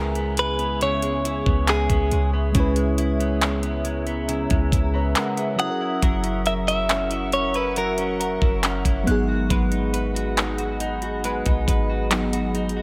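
Contemporary R&B at a slow 69 BPM in C# dorian, this excerpt from a longer piece carries a longing, moody air over chords moving from C#m7 to F#7 at 5.6 seconds and G#m7 at 9.1 seconds. A clean, direct-recorded electric guitar sings the melody up front with a bright, twangy tone and delay, stopping at 8.6 seconds. A second clean guitar, warmer in tone, plays arpeggios through lush chorus, while a mellow FM electric piano adds soft, full-bodied accompaniment colored by chorus and phaser. Alongside them, a deep ambient pad holds sustained chords with a slow attack and built-in reverb, and a faint, warbling synth bell drifts in the background with chorus and delay. A boomy, sine-like 808-style bass anchors the low end, and a polished electronic drum kit of knocking kick, metallic hi-hats and handclaps enters at 0.2 seconds, sitting close in a small-room sound within a digital ambience.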